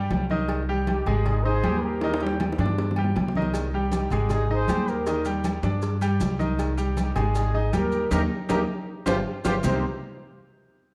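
A punchy, tightly grouped trombone section with light vibrato carries the melody from 0.9 s in this fiery, danceable salsa fragment in C minor at 157 BPM, over a brilliant, polished concert grand piano and a woody, thumpy pizzicato upright bass up front, with background congas, round low-tuned cowbell and bongos, and ringing metal-shelled timbales and agogo bells, joined by grainy, mellow maracas at 3.5 s, all set in a wet recital-hall reverb with a dark, warm production, with drum fills at 2.0 s and 9.1 s and a band accent from 8.1 s.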